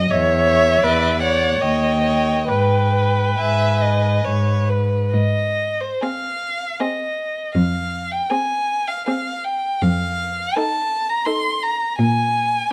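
A solemn, melancholic slow movement for string quartet opens in G# minor, with two violins and viola entering together and the cello just behind. The first violin carries an expressive melody full of vibrato and portamento over a smooth, even second violin line and a focused viola accompaniment, while the close, up-front cello anchors the bass with a rich bowed tone. The rubato 3/4 pulse moves between 64 and 85 BPM, the music turns to Ab major at 5.1 s, and moderate large-studio reverb surrounds this excerpt until the first violin's last note at 12.7 s.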